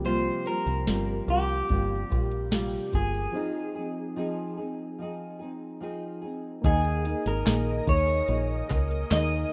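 A laid-back 73 BPM straight 4/4 groove from a soft, tape-warm vintage rhythm box and a deep, foam-muted dub bass anchors this nostalgic indie bedroom-pop excerpt, where a fingerpicked nylon-string guitar with lush chorus and vibrato and mellow, airy electric-piano-like synth keys move from C7sus4 through a break on Fm7 while a twangy, slightly broken-up electric guitar carries the melody, before sawtooth string-machine cellos enter at 6.6 seconds on Ebsus4 and hollow group handclaps join at 7.5 seconds, all in a rough home demo mix with light digital reverb.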